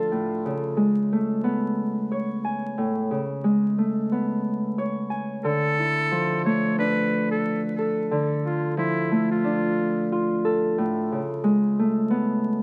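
Confident yet nostalgic, this swung hip hop fragment from a longer piece rests on a thumb-plucked Celtic harp that rings up front from the start, its warm tone softened by cassette-tape colour, filtering and plate reverb. At 5.4 seconds a metal-muted trumpet takes a jazz-style solo, buzzy and breathy with light vibrato and scooped notes, trailing tape echo before it drops out at 10.3 seconds. Vinyl crackle and a moderate studio room surround the harmony as it moves from Amaj9 to Dmadd9 and back.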